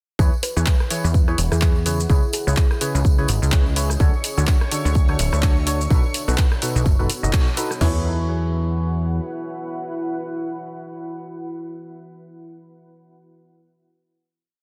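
A euphoric, feel-good piano house piece at 126 BPM in E major opens at 0.2 s on a swung drop, where hollow, organ-like stabs play dotted-rhythm chords in close voicing under lush chorus, sidechain pumping and digital delay, while a punchy, funky sawtooth bass riff pumps up front and a layered house drum kit with a cracking snare and four-on-the-floor kick drives alongside a re-recorded analog drum machine's handclaps, hats, rim click and shaker and a close, dry tambourine in the background; a deep, moody ambient pad of slowly shifting chords and a woody kalimba with digital delay add color, a silky, bright string pad holds a high note from 4.0 s, and after the chords move through C#m7, Dmaj7 and B7, a final E6 chord rings from 7.8 s in a dense, heavily limited modern master.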